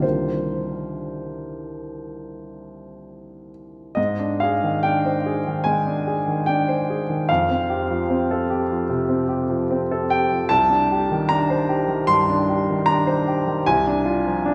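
A clear, polished baby grand piano opens on a Cm11 chord and carries this short, mysterious and wistful impressionist solo in C minor, drifting in rubato between 59 and 78 BPM in 4/4. Sitting up front and spanning C2 to C6, it moves into a new section at 4.0 seconds through Abmaj7#11, Fadd9 and Cm9 harmonies before settling on a rootless Bb9/C at 13.6 seconds. A wet church reverb with a 3.7-second decay surrounds the instrument, tuned to A4 = 437 Hz, in this fragment cut from a longer classical piece.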